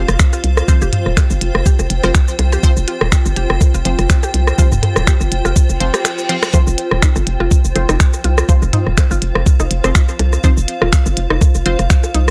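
A clinical, hypnotic minimal techno excerpt at 123 BPM opens with a hollow, bouncy FM bass up front, a woody mallet-like synth pluck riff in the background with chorus, phaser and analog delay, muted dub chord stabs carrying phaser and tape echo, and a cloudy, evolving granular pad; a click drum kit of finger snaps, clicky hats and shaker joins with overdriven percussion blips, rim clicks and toms alongside an overdriven, knocking electronic kick, while a reverse cymbal sounds from 5.8 seconds across a brief break from 6.0 to 6.5 seconds in a dry, gritty digital ambience.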